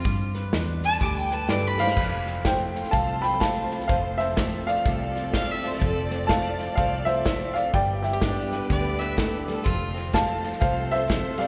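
Heartbroken and lonesome, this swung 125 BPM honky-tonk country excerpt opens on a clear, focused fiddle solo over bright picked acoustic guitar, round muted electric bass and a punchy, up-front drum kit, before a dark, woody, slightly detuned upright piano takes the melody at 1.5 seconds, rich bowed chamber strings enter behind it at 2.0 seconds, and the fiddle returns as a second line at 5.3 seconds, all bathed in the long reverb of a church.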